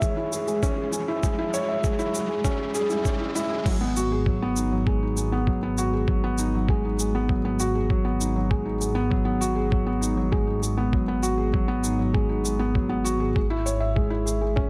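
A soft felt-muted upright piano riff with audible action noise and digital delay opens this moving, intimate piano and strings electronica excerpt at 99 BPM, joined from the start by a deep, rumbling detuned saw bass with sidechain pumping, a thumpy overdriven electronic kick, a tape-warm electronic shaker and crash cymbal, and an electronic riser that carries the build-up to the drop at 3.7 seconds, heard in a moderate recital hall reverb.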